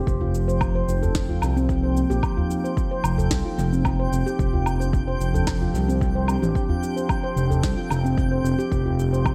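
Earthy and peaceful, this organic downtempo excerpt opens with a ringing, meditative handpan playing arpeggios through analog delay, over an up-front synth bass that is smooth and gliding with portamento, vibrato and sidechain pumping. From 0.5 seconds a warbling, nostalgic, lo-fi tape-like pad holds mellow sustained chords with chorus, built-in reverb and pumping of its own, while a faint twinkling granular texture adds a sparkling shimmer on a single high note. An electronic deep kick, a sharp electronic snare with cabasa and woodblock steeped in dub echo, and an acoustic udu in the background give a lightly swung groove to an echo-heavy mix with light reverb.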